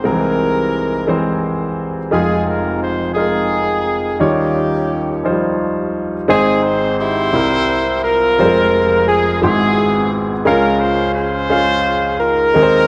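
A clear baby grand piano opens the fragment, its intimate, natural tone carrying long sustain and audible action noise as it lays down the accompaniment up front. At 0.1 s a horn section joins with the melody, its warm, punchy, pop-style ensemble sound touched with light vibrato and sitting just as present in the mix. This is gospel in a lilting 6/8 with a straight feel, and the mood is reverent yet jubilant, moving through rich harmony from an altered dominant chord toward a settling Db. A second passage begins at 6.3 s, where the chord changes come more often before the phrase is cut off at 12.9 s. Moderate scoring-stage reverb gives the pair a spacious halo, while the dark overall production carries a faint mains hum beneath the music.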